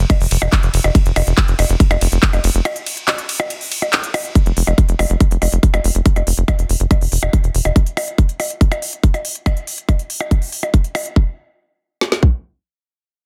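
A tight, punchy sequencer bass opens this hypnotic, intense psychedelic trance passage, cut from a longer piece, its sawtooth and square-wave tones shaped by a filter pluck, a moving notch and a fast, decaying attack. Two electronic drum kits join almost at once and sit up front. One supplies a tight kick and a woody snare, while the other adds handclaps, smooth hi-hats, percussion blips and ride cymbal, both carrying a small-room character. The opening drop gives way to a brief break, and at 4.4 seconds a filter sweep runs across the bass until it stops at 7.7 seconds, leaving the layered drums to drive on alone. The production is dense and heavily limited, with little reverb, keeping the driving groove dry and close.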